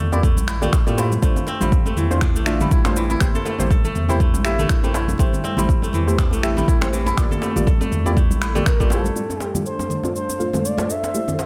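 A swung afro house groove at 121 BPM drives this spiritual, earthy excerpt, built on a deep, tape-warm electronic kick up front with produced shaker and finger snaps, while djembe and bright, thin-skinned congas sit back in a live room. A round sine sub bass and a soft, mellow chord stab pump against the kick, the stab carrying chorus and delay over a chord cycle that moves from Gm7 through Dm7/A, C7/A and Am7. Crisp, ringing fingerpicked kora arpeggios run from the start, dulled by a low-pass filter and echoed by delay, until about 10.8 seconds. An ethereal, airy pad of detuned unison saws and a noise layer swells in at 2.3 seconds with ensemble chorus, phaser and its own reverb. At about 8.7 seconds a smooth, expressive sawtooth lead with vibrato and chorus takes up a short melody between A4 and E5, and at 9.2 seconds the music shifts into a new section as a filter sweeps across the chord stab.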